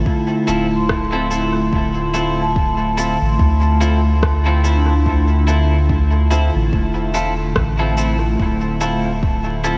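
Ambient dub in D minor at 72 BPM, this meditative, deep excerpt sits on a single Dm7 chord with a lightly swung sixteenth-note feel. A warbling, nostalgic tape-like pad holds sustained chords from the start, its detuned, lo-fi tone dark and vintage with chorus and its own reverb, while a soft, round dub sub bass sits up front beneath it. A layered electronic kick arrives at 0.1 seconds, and by 0.5 seconds a clean, compressed semi-hollow electric guitar adds picked stabs through lush chorus and dub echo, joined by a quiet electronic shaker and rim click that also trail dub echo. At 0.8 seconds a vibraphone played with soft mallets enters in the background, its metallic, ringing arpeggios given a mellow glow by medium motor vibrato and analog delay. The whole mix is dreamy and soaked in a huge ambient reverb with a long tail, with vinyl crackle adding a dusty surface.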